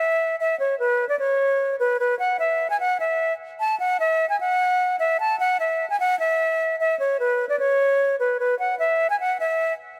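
A reedy concert flute carries this short hip hop piece on its own, playing solo from 0.0 to 9.7 seconds in a register that runs from B4 to A5. Its airy, straight tone sits up front, with tongued notes and a touch of delay trailing behind them. The tempo is 150 BPM in 4/4 with a half-time feel, and the tuning sits slightly low at A4 = 437 Hz. The mood is wistful yet triumphant, a blend of longing and pride. Light reverb and a small room ambience give the flute a close, intimate setting, and the clip is cut from a longer piece.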